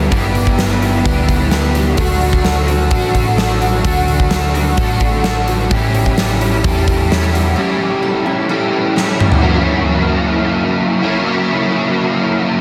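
A hazy, blissful stretch of shoegaze-tinged dream pop rock, cut from a longer piece and moving in a straight 4/4. An overdriven electric guitar sits up front with a dark, compressed riff coated in ensemble chorus, while a second electric guitar through a small old amp plays a slightly broken-up, lo-fi riff in the background, trailed by reverse reverb. Behind them, a picked twelve-string acoustic guitar adds boxy, shimmering, octave-doubled arpeggios with subtle chorus and tape echo, and a hollow-body short-scale electric bass gives a round, punchy low end until 7.5 seconds. A huge arena drum kit with a punchy kick and medium-tuned snare pumps in a hall-like room, rolling through a drum fill at 9.0 seconds. The chords move from G6 through D and A7 to F#7, and after 9.4 seconds the overdriven guitar carries on alone in a dense, heavily limited modern master.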